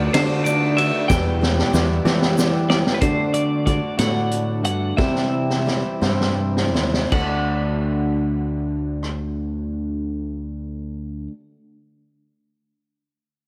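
Open-road and jangly, this folk rock and heartland rock excerpt moves in a slow 6/8 at 52-63 BPM in D mixolydian, with a bright, twangy twelve-string electric guitar carrying the melody over a boxy, shimmering picked twelve-string acoustic, a slightly broken-up electric guitar riff and a round, direct picked electric bass. A vintage drum kit with a high-tuned snare, punchy kick and dark cymbals sits up front and plays fills before dropping out at 9.2 s, while a grainy egg shaker appears briefly near the start. The tempo slows between 3.0 and 7.1 s, and a concert hall reverb gives the recording a big arena sound.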